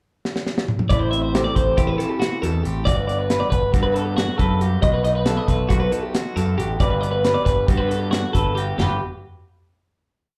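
A bright, twangy twelve-string electric guitar sits up front, its clean, compressed, picked ostinato carrying a slapback echo through this short, intricate and wistful math rock and midwest emo piece in G major. It runs at 275 BPM in eighths in a straight 9/8, tuned to A4 = 439 Hz. The drum kit opens with a fill at 0.3 seconds, a dark, smooth acoustic sound from a small room, with a medium-tuned snare, a tight kick, a rolled-off top, and crash, hi-hat and toms that drive the 9/8 groove. At 0.9 seconds the other parts enter: a growling picked electric bass, overdriven and up front, locked to the kick drum, and a lo-fi electric guitar through a small old amp, slightly broken-up, playing syncopated fingerstyle accompaniment. The harmony moves through Am7, Gmaj7, B7 and back to Gmaj7 before a final G chord lands at 8.8 seconds. The whole performance sounds like a live gig heard through the venue's PA, wrapped in club reverb.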